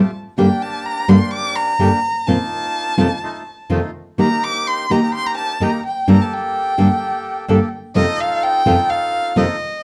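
A dark, warm production with a moderate club reverb frames this melancholic, tense tango fragment at 127 BPM in a rubato 4/4, where an up-front bowed violin carries a solo line throughout, its soft attack, expressive vibrato and portamento singing high above a fingerpicked classical nylon-string guitar whose warm accompaniment and audible finger squeaks sit close to the ear, while a reedy, bright bandoneon adds stabs through a moody progression of Gm, F7sus4, F7, Eb, Gmadd9 and F7.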